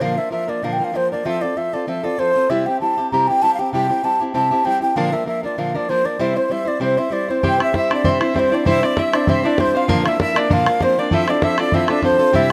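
A hollow wooden baroque flute leads this lively, rollicking Celtic reel with airy vibrato and a crisp attack, sitting up front beside a full-bodied, fingerpicked jumbo steel-string guitar that carries the accompaniment. At 7.4 seconds the tune repeats, joined by a mellow, ringing harp in the background, a rich, focused bowed fiddle with light vibrato, and a boomy, close, dry bodhran. The whole passage sits in a moderate plate reverb, cut from a longer piece.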